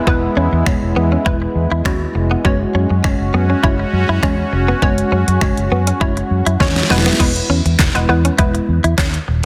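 Dance-pop at 101 BPM in E major, upbeat and carefree, this excerpt layers a bright, evolving sawtooth pad that pumps with the sidechain until 7.2 seconds, a clean, direct-recorded electric guitar riff with analog chorus, a hollow, bouncy square-wave pluck, a dark, foam-muted fingered bass up front, a barely audible downlifter at the opening, and an overdriven, layered pop drum kit with knocking kick, deep snare, finger snaps and handclaps that plays a fill into the second section at 7.2 seconds, all under light reverb and a dense, heavily limited master.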